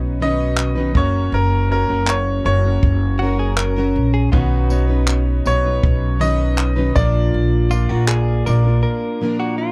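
Acoustic pop at a relaxed 80 BPM in 4/4 with a straight feel, this brief, tender and reflective passage is cut from a longer piece and moves through chords of Badd9, Gb and Bb. A bright upright piano carries the melody with a brilliant, woody tone and long sustain, set over a full-bodied, fingerpicked jumbo steel-string acoustic guitar that is double-tracked, while a clear concert grand piano sits in the background with deep bass. An up-front pizzicato upright bass with steel strings gives a woody low end, and a compact cocktail drum kit adds a punchy kick, handclaps and tambourine in a dark, smooth small-room sound with a rolled-off top. At 3.2 seconds a clean, compressed, direct-recorded electric guitar enters with a picked second line bathed in spring reverb. The mix is dry and close, like a 1970s studio recording; the drums fall away at 8.6 seconds and the bass at 8.8 seconds, where a short break begins.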